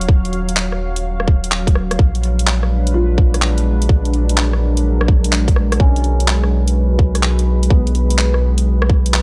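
A melancholic, wistful future garage fragment opens on a dark, detuned sawtooth pad with chorus and built-in reverb, a soft felt-muted upright piano sitting in the background with analog delay, and a round dub sub bass, all pumping against the tight, up-front electronic kick that enters at 0.1 s. The garage kit adds handclaps, rim clicks and warm hi-hats at 126 BPM in 4/4, swung 66% on the 16ths, while the harmony moves from Ebm9 to Bb7b9b13 at 2.0 s and Abm7/Cb at 5.8 s. The dry, gritty sound carries transformer saturation and a cassette-tape grain.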